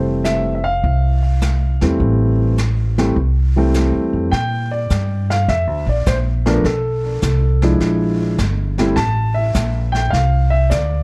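A grand piano carrying the melody through a touch of analog delay and a woody, thumpy pizzicato upright bass sit up front from the start of this playful, swinging jazz piano trio fragment, joined at 0.2 seconds by a softer, brushed drum kit with a medium-tuned snare, hi-hat and boomy kick, as the harmony drifts from Fmaj7 into a second passage at 4.3 seconds that winds through Bb7#11 to Am, all wrapped in a dark, warm production with light reverb.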